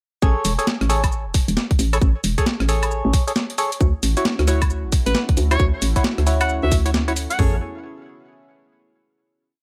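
A bouncy, soulful two-step UK garage piece in A major at 134 BPM opens at 0.2 seconds with swung, syncopated organ-like chord stabs, hollow and mellow with chorus, phaser and digital delay, over a punchy, knocking FM bass riff and two layered drum kits: a tight, tape-tinged garage kit with a two-step kick, floor tom and open hats, and a gritty, compressed sampler-style kit of skipping swung hats, rims, shaker, woodblock and a high-tuned snare. At 3.8 seconds a smooth sawtooth pad with a sub octave eases in softly behind, pumping under sidechain as the harmony moves from Amaj7 to Dmaj9, and at 5.1 seconds a bright alto saxophone adds short jazz-style solo phrases with vibrato and digital delay. The dry mix resolves on a final Amaj7 chord from 7.4 seconds.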